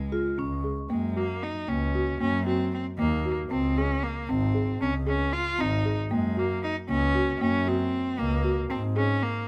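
Moving in a straight 5/8 at 231 BPM counted in eighths, this restless, playful piece of contemporary chamber music is cut from a longer work, its harmony shifting among Db5, Gb and Ab chords. A rich, smooth bowed cello carries the melody with vibrato, over woody, dry arpeggios from a rustic folk marimba and a bowed double bass with a nasal, reedy gut-string tone. A metallic, ringing vibraphone with slow motor vibrato adds a brief second line only from 0.1 to 0.9 seconds, and the close, detailed microphones and light reverb keep the cello, bass and vibraphone up front.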